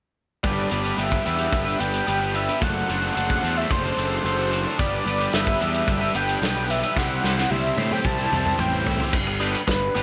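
A straight 4/4 pulse at 110 BPM drives this jangly, upbeat indie rock passage in G major, cut from a longer piece, with a loose acoustic drum kit of punchy kick, medium-tuned snare, dark cymbals, hi-hat and toms sitting up front, gritty and rolled-off, and breaking into a fill from 7.0 to 9.1 seconds. A cranked stack guitar, double-tracked and overdriven, picks the riff over a round, fuzzy electric bass, while a bold, nasal octave-doubled lead carries the melody with a retro detuned sawtooth-and-triangle tone, vibrato, chorus and slapback echo. The chords move from G6 to D7/F# and back to G6, then through C to G, all set in a small room ambience.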